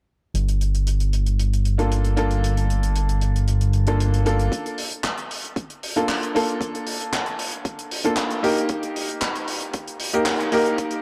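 A fat, detuned analog sawtooth bass with a filter sweep sits up front over Gm7 in this sensual, cosmic nu-disco excerpt at 115 BPM in G minor, backed by a dry, damped 70s drum kit with handclaps and hi-hat and joined at 1.8 s by a bright, brilliant grand piano with tape echo, before the bass stops at 4.5 s and a punchy, layered electronic kick enters as a build-up begins, within a dark production with light small-room reverb.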